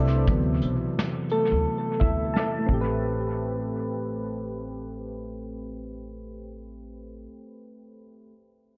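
Soft, round electric-piano-like synth keys carry this nostalgic, reflective lo-fi hip hop excerpt, sitting up front with a mellow, gentle tone, a fast attack and a decaying sound, and a filter sweep colored by chorus, cassette tape character and dub echo. The keys carry a featured solo through the opening section, where the harmony moves from D13 to Am9 over a swung 16th-note feel. A woody, thumpy upright bass with gut strings is plucked close to the listener and stops at 7.3 seconds, while the keys continue to the end at 8.3 seconds. A vintage brush drum kit with a tight kick, medium-tuned snare and hi-hat plays only from 0.3 to 2.9 seconds, its dark, smooth, rolled-off sound trailing into dub echo. The whole mix is echo-heavy and dusted with vinyl crackle, softened by a low-pass filter and bathed in a moderate spring reverb.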